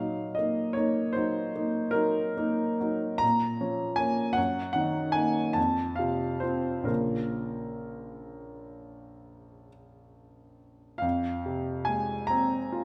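A clear, intimate grand piano plays alone from the start in this mournful, wistful romantic nocturne in Bb minor, taken from a longer piece and moving in a rubato 9/8 at 42-53 BPM, spanning Bb1 to Bb5 with audible action noise, sitting up front in a moderate recital hall reverb as its harmony drifts from Ebm/Bb through Bbm and F5 before turning toward Fm at 11.0 seconds.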